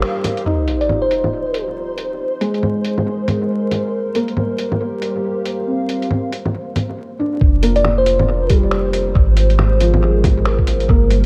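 A brief break opens this melancholic, ghostly future garage excerpt with a full-band accent: a dark, woody upright piano with tape echo and a detuned analog pad with chorus, both carrying 12-bit sampler grit and sidechain pumping. A lo-fi drum kit of muffled bongos, finger snaps and hi-hat adds dub echo, and a sub drop lands at 0.5 seconds beneath a flickering, grainy texture in the background. A bell-like FM electric piano sparkles briefly in two places, and from 7.4 seconds a thumpy, pitched-down kick and a round, soft 808-style bass take the front of an echo-heavy mix dusted with vinyl crackle.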